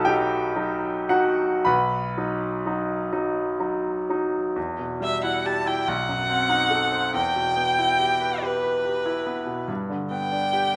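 A bright grand piano with audible action noise and long sustain opens this elegiac, yearning romantic classical excerpt in a rubato 6/8, and at 5.0 s a single rich, focused violin with vibrato enters up front to carry the melody over the piano's accompaniment, both set in a wet recital hall reverb.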